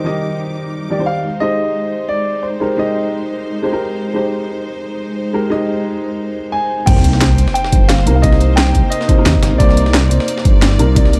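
A dark, lightly reverberant production opens this lush, soulful liquid drum and bass excerpt in C minor at 176 BPM. A mellow, boxy baby grand with audible action noise and a long-sustaining concert grand carry accompaniment and melody, both through tape echo, over bowed symphonic strings rich with vibrato. At 6.9 seconds the drop lands with a sub-drop impact, a deep, rumbling detuned saw bass up front, a knocking overdriven kick, a layered kit with a cracking snare and bright hats, and a gritty, pitched-up breakbeat kit tucked in the background.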